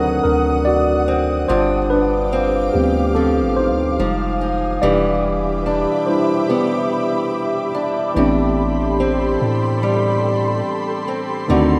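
A worn, slightly out-of-tune tine electric piano with light overdrive takes the lead through the first 8.2 seconds of this longing, late-night contemporary R&B excerpt in A minor at 72 BPM with a gentle swing, backed by a boxy parlour steel-string acoustic guitar fingerpicking delayed arpeggios with audible finger squeak, an ethereal detuned pad holding chords through ensemble chorus and its own reverb, and a deep, decaying 808-style bass, all set in a lush hall reverb within a rough home-demo mix marked by lossy compression artefacts.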